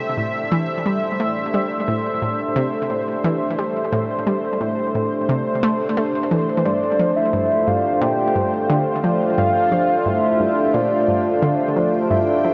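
A sweeping, resonant pad holds sustained Am7 chords up front while a round, detuned analog pluck repeats a low riff through chorus and delay, and at 6.7 s, as the harmony shifts, a soft octave-layered synth lead with vibrato carries a dark melody over a very quiet, bubbling stepped-filter texture, making a hypnotic, mysterious stretch of ambient, sequencer-driven space music at 88 BPM, drenched in huge reverb and the warbly pitch drift of worn cassette tape.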